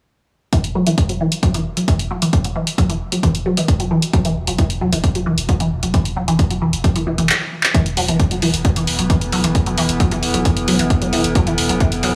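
Relentless, industrial peak-time techno cut from a longer piece, where a squelchy, detuned blip pluck riff swirls through phaser, chorus and tape echo over an up-front, heavy layered kick and tape-warm analog handclaps and hats, a saturated sub bass joins at 4.4 s, a filter sweep and drum fill lead into 7.7 s, and an eerie, metallic ring-modulated drone rises in at 8.1 s amid pumping sidechain and light digital room ambience.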